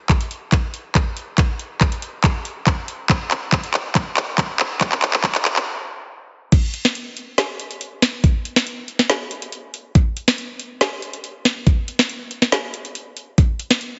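This future bass excerpt opens on a build-up, with a drum fill and a filter sweep starting almost at once, as the overdriven electronic kick and a trap drum kit enter together at 0.1 seconds. The mood is dreamy and bittersweet, set at 140 BPM in 4/4 with a half-time feel. The layered kick has a knocking, up-front punch and was re-recorded in a small room. Above it, the trap kit brings a woody snare, metallic hi-hats, handclaps and crash cymbal, also placed close. The fill halts at 5.7 seconds for a brief stop before the drop lands at 6.5 seconds and carries the excerpt through its final seconds. A lush hall reverb surrounds the parts, while heavy compression and a high-pass filter give the whole mix a thin, radio-like sound with the top end capped at 7.8 kHz.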